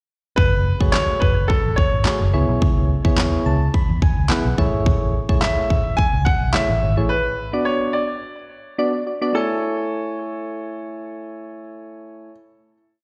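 A syncopated pop beat at 107 BPM in 4/4, with a punchy kick and fat snare layered with handclaps, drives this summery, carefree dance-pop piece in A major. A round, foam-muted electric bass with sidechain pumping joins the beat, and both have dropped out by 7.1 seconds. A clear, polished baby grand piano carries a motif-based melody of call phrases through slapback and tape echo, while soft, detuned electric-piano-like synth keys with chorus add mellow syncopated chord stabs and a fill at 3.2 seconds, moving from F#madd9 to a closing Amaj7 chord at 9.3 seconds, all heard through a live venue's PA with a recital-hall ambience.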